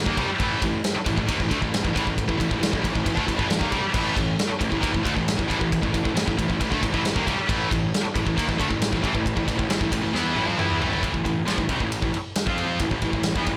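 Heavy metal at 135 BPM in A minor, epic and aggressive, with an up-front acoustic drum kit of punchy kick, medium-tuned snare, crash, ride and toms in a big, natural room, driving a fill from 10.1 to 11.0 seconds, while three bright, picked, distorted guitars play riffs in the background, one of them double-tracked and very quiet until it stops at 11.0 seconds, and a growly fuzz bass sits underneath, all captured with light reverb in a blown-out, overdriven recording cut from a longer piece.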